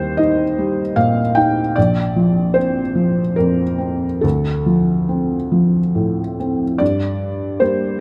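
Neoclassical minimalist piano in a melancholic, reflective mood, played in a rubato triple metre. A felt-muted upright piano carries the whole excerpt alone, reaching from deep in the bass up into its upper middle register. Its tone is soft and mellow with a boxy, intimate character, and the thin felt lends a hushed quality while the audible action noise keeps the instrument's mechanism present. Close, detailed miking places the piano up front, with only light reverb around it. The harmony moves from Eb through Bbadd9 and Dm7 before settling on Gm at 6.8 seconds, where a brief new section opens just as the fragment, cut from a longer piece, comes to an end.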